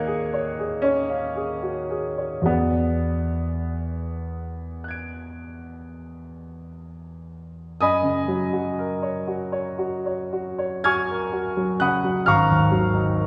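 Set in a wet scoring-stage reverb and heard from further back in the room with a softened top end, this luminous, serene fragment of impressionist classical solo piano moves in a rubato 9/8 at 32-44 BPM in F# major, the clear, open concert grand spanning deep bass to high treble as it passes from D#m11 and E9 into a second passage at 7.8 s that settles on F#6 before closing on G#7sus2.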